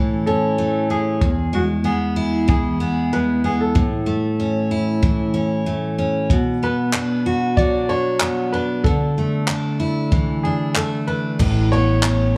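A picked steel-string acoustic guitar anchors this easy-going, carefree acoustic pop piece, its full-bodied jumbo tone sitting up front and carrying the accompaniment across its low-to-middle register through the whole passage. Above it, a clear upright piano sings the melody with a woody, polished voice and long sustain, sitting a little further back in the balance. A compact cocktail kit joins at 1.2 s, adding dry handclaps, a punchy kick and darkly tinted crash cymbals in a straight 4/4 feel. The harmony moves easily from A through E, Bm and Dsus2 before settling on an Aadd9. At 11.4 s a round analog bass arrives on a single deep low note, blending sawtooth and sine colours with a fast attack and sustained body. A light reverb gives the small room a gentle ambience, and the passage is cut from a longer piece.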